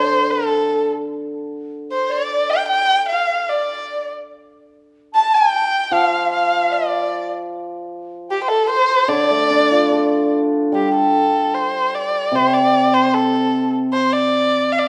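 Tender and graceful, this fragment of Chinese traditional chamber music unfolds in a rubato 2/4 at 75 BPM in the D yu mode, with a warm, expressive bowed erhu carrying the melody up front with vibrato, portamento and a soft attack, an airy, hollow bamboo dizi with a buzzing membrane adding a mellow, distant second line until 10.3 s, and a shimmering, ringing hammered dulcimer accompanying close by, pausing at 1.9 s before returning at 5.9 s, the ensemble bathed in the lush reverb of a recital hall.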